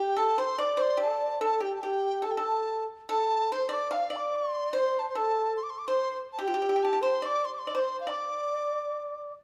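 A large dizi with a hollow, buzzing tone carries the melody up front in this graceful, wistful Chinese traditional chamber piece, its pure notes tongued and shaded with vibrato across the full 9.3 seconds. Beneath it, an end-blown xiao adds an airy, unsteady second line with its own wavering pitch, while a pipa played with fingerpicks supplies a dry, percussive counterpart. The fragment, cut from a longer work, moves in a rubato 2/4 at 72 BPM in the D yu mode, and a moderate recital-hall reverb gives the close trio a soft halo of space.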